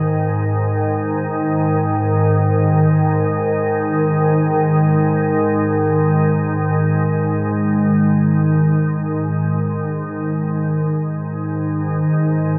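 Floating in free time, this haunting, meditative world piece, cut from a longer work, rests on an up-front, detuned, wave-folded organ-like drone with ensemble chorus and its own reverb, while very quiet, shimmering crotales ring high above it only until 3.0 seconds, all set in a huge ambient reverb and colored by the warbling pitch drift of worn cassette tape.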